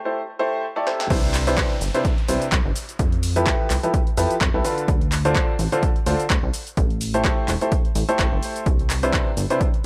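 Euphoric and joyful, this piano house excerpt runs at 127 BPM in C major with a 16th-note swing, cut from a longer piece. A bright grand piano riff opens the track at 0.1 seconds over a short break and build-up with a filter sweep, its brilliant yet worn tone sitting up front with delay and sidechain pumping. A drum fill at 0.9 seconds brings in the punchy analog drum machine, tape-warm and re-recorded in a small room, with crash cymbal, handclaps, hi-hat, shaker and a punchy snare carrying a short room sound. The drop lands at 1.1 seconds, where an up-front electronic kick, a plucky, funky analog bass built from sawtooth, square and sine waves with wave-folding and a fast, decaying filter pluck, and a downlifter in the background all enter, the bass also carrying sidechain pumping. Chords move from Am7 through Cmaj9, Fmaj9#11 and Dm7 before returning to Am7 and Cmaj9, all in a dry, high-passed mix.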